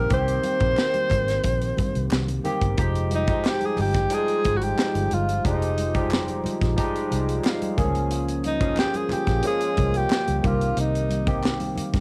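Cinematic and silky, this excerpt of lush 1970s-style soul moves at 90 BPM in F minor, with a breathy, whispered tenor saxophone carrying the melody over a barky, overdriven tine electric piano bathed in chorus, a round, foam-muted fingered electric bass, a modern studio drum kit with a punchy kick and high-tuned snare, bright congas and crisp group handclaps in the background, and a very quiet, dark French horn section entering with sustained chords at 2.8 seconds, while the electric piano adds a fill at 7.1 seconds and the whole piece carries the intimate feel of a home cassette recording.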